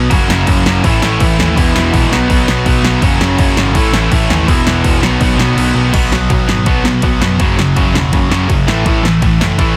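A punchy analog drum machine sits up front with a tape-tinged kick and snare, driving a rowdy, upbeat punk rock excerpt at 165 BPM in B major, while a growly, amped overdriven bass and three picked electric guitars churn out riffs: a tight, bright distorted one, plus a crunchy overdriven part and a cranked, double-tracked stack guitar tucked in the background. The riffs cycle through F#, A, E and B before the kick and snare drop out at 5.6 seconds, and the band then hammers B5, F#5 and A5 power chords from 5.9 seconds. The sound is dry, dense and heavily limited.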